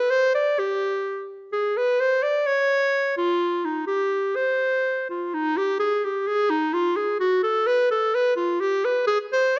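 A clear clarinet plays alone from start to finish, up front and in a classical style, carrying a festive, jolly alpine folk tune in C harmonic minor. The tempo sits at 127 BPM in a straight 2/4, giving the line a brisk step. Its melody stays within a compact range from Eb4 to D5. The passage states the same section twice, with the repeat beginning at 5.3 seconds and running to 9.6 seconds. A moderate recital hall reverb surrounds the instrument, while the top end is cut above 7.6 kHz. This short fragment is taken from a longer piece.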